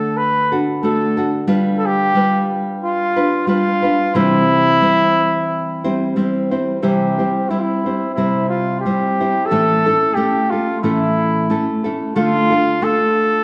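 A moderate 90 BPM pulse in 4/4 carries a light swing on the eighth notes, giving this Mexican folk excerpt in C major a festive, proud lilt. A mellow trumpet plays the melody in a classical style, its solo line sounding distant and roomy yet sitting up front in the mix. Beneath it, a nylon-string guitar provides fingerpicked accompaniment with a full-bodied, acoustic tone, spanning from deep bass notes to its upper register. Both parts sound from the opening to 13.4 seconds, moving from a first section into a second at 6.8 seconds as the harmony shifts through D, G7, C, A and Dm. The sound is dark and warm, set in a wet recital hall reverb that lends the pair a spacious, concert-like glow.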